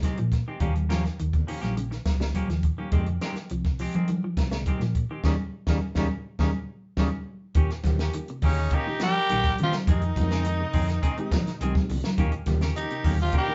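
A raspy, gritty tenor saxophone takes the melody up front from 8.4 seconds, backed by a clear trumpet and a breathy, whispered baritone saxophone, after a hypnotic, intense afrobeat groove of punchy, dry cocktail drums, damped congas, round hollow-body bass, clean picked guitar arpeggios, bright semi-hollow guitar stabs and, from 7.6 seconds, a reedy electric piano, with a band accent and drum fill leading into the horns over an Eb7 chord in a live-room recording cut from a longer piece.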